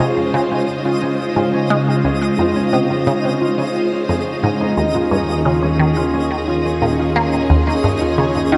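The recording has an echo-heavy sound with a cassette-tape character and a long plate reverb. This excerpt is ambient, sequencer-driven space music in Db major, moving at 88 BPM in a straight 4/4 with an expansive, luminous mood. A phased string machine sits up front with swirling, warbling sustained chords, its ensemble chorus and phaser giving it a vintage sheen as the harmony moves from Dbmaj7 to Eb7sus4 at 4.8 seconds. Beneath it, a resonant blip pluck repeats a juicy, squelchy riff in the low register, treated with phaser and tape echo. A thumb-plucked concert harp rings out arpeggios through tape echo. High above, a faint granular texture twinkles and sparkles with an octave-up shimmer, all four parts sounding from start to finish across the 8.6-second clip.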